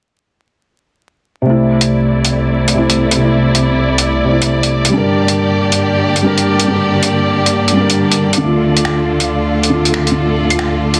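Future garage with a ghostly, wistful mood, this excerpt opens on a felt-muted upright piano at 1.4 s, its soft, dark accompaniment carrying audible action noise through a low-pass filter and digital delay, joined at once by a lush, bowed string section with vibrato over chords moving from C6 to Gm to Dm. A lo-fi sampler-style kit enters at 1.8 s with muffled, pitched-down claves, finger snaps and hi-hat, the snare soft-clipped and the feel swung. Behind them a drifting glass-harmonics texture arrives at 2.4 s, holding a glassy D5 with chorus, all set in a moderate room reverb and a dense, heavily limited master dusted with vinyl crackle.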